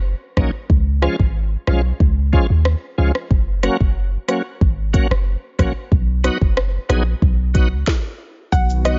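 Sunny, summery dancehall at 92 BPM in F# major, cut from a longer piece, where a deep, boomy 808-style bass and an up-front electronic afro-pop kit with a deep kick, sharp snare, rim click, shaker and smooth hats carry a bright, shouting tonewheel organ with light overdrive, chorus vibrato, slow rotary speaker and sidechain pumping through F#, C# and B chords, before a stop at 7.9 seconds and the entry at 8.5 seconds of a soft, round chorused pluck melody and a lush, thick, warbling unison pad, all in a dry, dark-topped mix.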